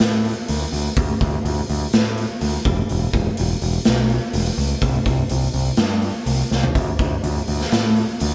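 A live, lightly reverberant room sound opens this short cut from a longer quiet-loud alternative rock track, moving at 124 BPM in a straight 4/4 with a cathartic, restless mood. Up front, a growling picked electric bass pushes dark, round, overdriven low notes, while a raw garage drum kit of hi-hat, snare, toms and a boomy kick rings in a bright stone room with a gritty, saturated, pumping character and a rolled-off top. Both play throughout, and the drums break into a fill at 6.5 seconds.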